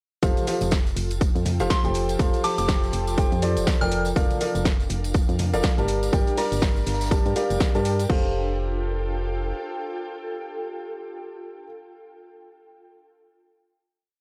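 A four-on-the-floor kick, overdriven and punchy and sitting up front, drives this uplifting, euphoric piano house piece at 122 BPM in 4/4, with a 59% swing on the sixteenths and a punchy analog drum machine adding programmed hats, shaker, backbeat snare and crash. A very quiet, gritty breakbeat kit loops underneath with edits, while tambourine and congas played with hard hands tick along in the background. A clear, woody upright piano carries a rhythmic chord riff in close voicing over Fadd9 and Bbmaj7/F, pumping against the kick beside a round, dark FM bass with a dotted rhythm. From 1.0 s an ethereal, warbling pad with ensemble chorus and built-in reverb holds slowly shifting chords, and a soft, pure synth bell with chorus, phaser and analog delay offers short answering phrases between 1.7 and 4.0 s. The drums drop out around 8.2 s, leaving piano, bass and pad on a final Fadd9; the bass stops at 9.5 s while piano and pad ring out. 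It is all captured as a dry, gritty hardware recording.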